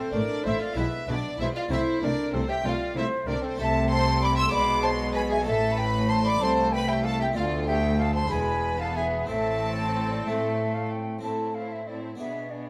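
Stormy and driving, this excerpt from a baroque-style concerto movement in 6/8 at 63 BPM (dotted quarters) settles into A minor, with a mellow, hollow silver flute carrying the melody alongside a dark, woody violin section while a second, richer violin section shapes a close, expressive line beneath. Soft-edged violas and a distant cello section fill the middle and low register, joined by an intense, clear double bass section that drops out at 11.2 s, while a brilliant, airy harpsichord with three sets of strings plucks quietly in the background. A moderate recital hall reverb gives the ensemble a sense of space, and the passage turns toward a brief new section at 11.2 s before closing on a diminished chord.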